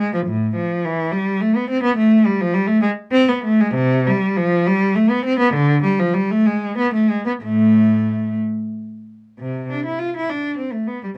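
A single bowed cello, clear and focused with vibrato, sits up front in this grave, solemn baroque-style suite movement for unaccompanied cello, moving in 6/8 with rubato phrasing across a range from A2 to F4. The playing unfolds over about 11 seconds, cut from a longer piece, with a return to its opening material at 9.4 seconds. Moderate studio ambience gives the sound a dark, warm setting.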